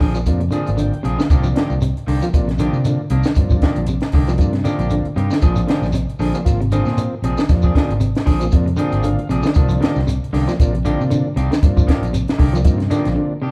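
Afrobeat with a joyful, driving swing, built on a twangy, slightly broken-up electric guitar playing arpeggios and a second picked guitar adding stabs, while a dark, round fingered bass holds the low end and a compact cocktail kit with a high-tuned snare and punchy kick sits up front. A grainy, mellow shekere and a vintage combo organ with light vibrato fill out the small-room sound, the organ stepping forward with fills at 0.5 and 8.5 seconds over a sway between Bb9 and Cm9. The band breaks at 13.2 seconds, closing this cut from a longer live-in-one-room performance.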